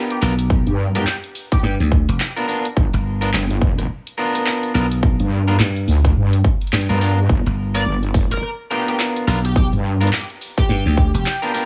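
Glitch hop at 106 BPM in 4/4 with a swung sixteenth feel, this gritty, playful excerpt from a longer piece sits on a G7#9 chord in a dry, close space. A punchy, overdriven electronic kick and a dubstep kit of handclaps, hi-hat and rim click, both re-recorded in a small room, drive a low end built from an up-front, growly thumbed slap bass with tube saturation and a heavy, detuned sawtooth wobble bass with chorus and overdrive. Clean, picked electric guitar stabs carry 12-bit sampler grit, sidechain pumping and delay throughout, while an edgy, tearing oscillator-sync lead with vibrato, chorus and delay sings its melody briefly at the start and returns from 7.7 seconds to the end.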